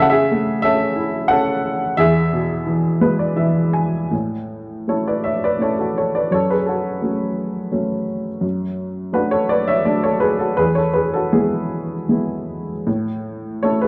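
A worn, woody, slightly detuned upright piano plays alone and up front in this sunny, lyrical classical excerpt in A major, its short-sustained notes moving in a rubato 3/4 at roughly 77-92 BPM through a gentle progression that settles back on A, with a brief fill from 2.7 to 4.1 seconds leading into a second passage, all set in a moderate scoring-stage reverb with a dark, warm production and a faint mains hum.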